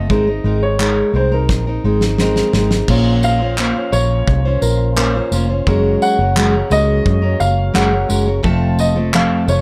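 Tender and wistful, this short acoustic pop excerpt moves at 86 BPM in Bb minor with a straight, unhurried feel. A dark, woody upright piano carries the melody with a mellow, boxy tone, while a fingerpicked steel-string acoustic guitar sits up front, full-bodied, with audible finger squeak. A vintage muted electric bass adds a round, foam-muted, amped low end, and a loose indie drum kit brings a fat snare, punchy kick, dark cymbals, handclaps and tambourine in a pumping studio room with a rolled-off top. After a drum fill from 1.5 to 2.9 seconds, a very quiet tonewheel organ enters at 2.9 seconds with lightly overdriven sustained chords, key click and a fast rotary speaker. The harmony moves from Abadd9 to Bbmadd9, Gbadd9 and F, and the dry, close sound keeps the parts intimate.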